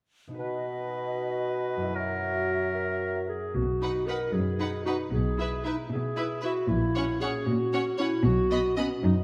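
Quirky and playful, this cinematic fragment in B major moves at 77 BPM in 6/8, with a ringing, thumb-plucked concert harp spinning arpeggios alongside a dark, roomy clarinet line that runs to the end. At first an airy flute section, a warm oboe and a mellow, vintage-toned bassoon fill out the woodwind texture. From about 3.5 s the bowed strings take over: a lush double bass section with expressive portamento and a close, smooth cello section carry the bass, a focused violin section sings the melody over an intense, distant second violin section, and a viola section sits in the background, all held in a wet scoring-stage reverb.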